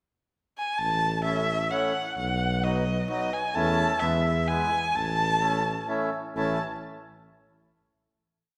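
This is a short, complete alpine folk dance-band piece in A major, jolly and festive, moving in a lively 3/4 at 130 BPM with a straight feel. A bowed erhu carries the melody from 0.6 seconds, sitting up front with a clear, focused tone, singing vibrato and sliding portamento as it spins short, motif-based song phrases. A mellow tuba joins at 0.8 seconds, playing root and fifth on the main beats in a classical style with light vibrato. From 1.2 seconds an accordion adds reedy, dark off-beat triad chords with a full, smooth body and dry tuning. The whole band sounds as if captured in a church or concert hall, with a long, reverberant ambience around a brief tune that closes on a final chord.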